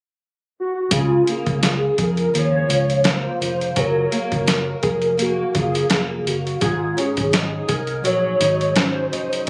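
Captured on a phone in a room with studio ambience, light reverb and compression, this nostalgic, laid-back fragment of indie and bedroom pop moves at 84 BPM in 4/4 with a gentle swing on the 16ths. A hollow, woody clarinet-like synth lead carries the melody from 0.6 seconds through phaser, ensemble chorus and tape echo. At 0.9 seconds a gritty, pitched-down boom bap sampler kit with a thumpy kick arrives up front, joined by a dark, foam-muted electric bass and a fingerpicked flamenco guitar coloured by chorus and vibrato, as the harmony moves from Db6 to Gbmaj9 at 3.8 seconds and then to Ab7sus4.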